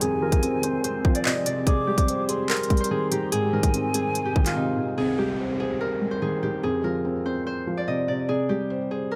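A half-time drill groove from an up-front electronic kit, with a hard-clipped kick, crisp hats and handclaps, drives this dark, menacing hip hop fragment until a break at 4.6 seconds, after which the drums drop out. Over it, a ringing, fingerpicked Celtic harp carries the melody through a low-pass filter, beside a felt-muted upright piano whose mellow, intimate accompaniment carries audible action noise. Meanwhile, an airy, hollow concert flute with vibrato and delay adds a second line, and a blurred, granular cloud pad sustains very quietly underneath, both dropping out around 5.0 seconds. Electronic downlifters sit in the background of this short cut from a longer piece, which is set in light small-room ambience.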